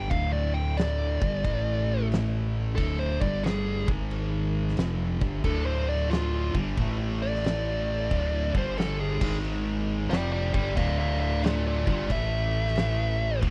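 Hypnotic and ominous, this stoner and doom metal excerpt rolls along in a swung 4/4, lifted from a longer piece. A dark, fuzz-drenched lead guitar carries the solo melody up front from 0.0 s, its notes trailing through tape echo, while an overdriven fingered bass sits equally forward with a round, amped tone. Behind them, two thick fuzz guitars pick out low riffs, and a double-tracked, high-gain guitar with a brighter edge joins the riffing at 5.4 s. An oversized, low-tuned drum kit comes in at 0.1 s with a fat snare, a punchy kick and crash cymbals, sounding saturated and gritty in a stone room. Very quiet vintage string-machine cellos hold mellow, sawtooth-toned chords with a slow attack and an ensemble chorus shimmer underneath. The whole recording is dry and close in a 1970s studio style, with lossy compression artefacts audible in the sound.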